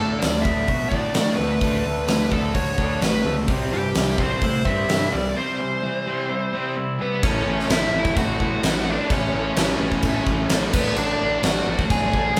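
A live band fills a large studio room with moderate reverb in this restless, cathartic quiet-loud alternative rock passage at 128 BPM in straight 4/4, tuned to A4 = 439 Hz. A dark, overdriven lead guitar carries the melody over a bright, double-tracked fuzz guitar riff sitting in the background and a punchy, overdriven picked bass, while a clean, twangy guitar plays fingered arpeggios through harmonic tremolo until 7.2 s, as the chords move from D6 and C to A6 and D/A. The acoustic drum kit sits up front from 0.2 s with a fat snare, punchy kick, hi-hat and crash cymbal in a stone-room ambience, and a break arrives at 5.4 s.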